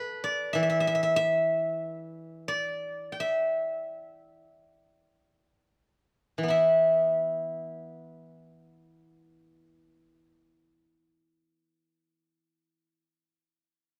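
Chinese traditional solo plucked-string music in a rubato 4/4 at roughly 34-50 BPM, this brief excerpt carries a longing, contemplative mood in the E yu mode, with the opening passage slowing down through its first 6.5 seconds before moving into a second section. A steel-string zither, played with fingerpicks, sounds alone from start to finish across a range of E3 to G5, its ringing, silvery tone set up front. Close, detailed microphones catch the instrument in a recital hall whose moderate reverb lingers around each note.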